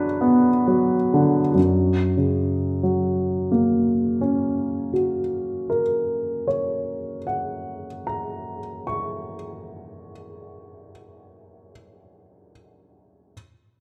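Tender and nostalgic, this short fragment of a romantic classical nocturne in F# major unfolds at a very slow, rubato 12/8 pulse of about 21-26 BPM, its solo grand piano sounding intimate, natural and up front with audible action noise, ranging from F#2 to C#6 in a reverberant recital hall, easing back over the opening Bm/F# chord before settling onto F# at 1.6 seconds for a new section that runs to 11.1 seconds.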